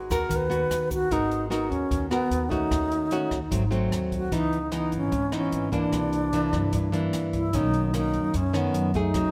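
A straight 4/4 bossa nova groove at 149 BPM moves this short, melancholic and intimate piece in G# minor, cut from a longer performance. The open jazz kit keeps a polished, small-room pulse of hi-hat, rim click and a boomy kick. A grainy egg shaker sits close and dry in the background until 1.1 seconds. Up front, a fingerpicked nylon-string guitar plays classical-toned accompaniment, and a woody, pizzicato upright bass on steel strings sits beneath it. The alto flute carries the melody close-miked and up front, with an airy, soft-attacked tone, vibrato and an unsteady quality, taking a solo in the opening 1.1 seconds before the longer second section runs to 9.3 seconds. Light reverb frames lush harmony moving from G#m9 through D#m7b5, G#7b9, C#m9 and C9 to a closing Bmaj9.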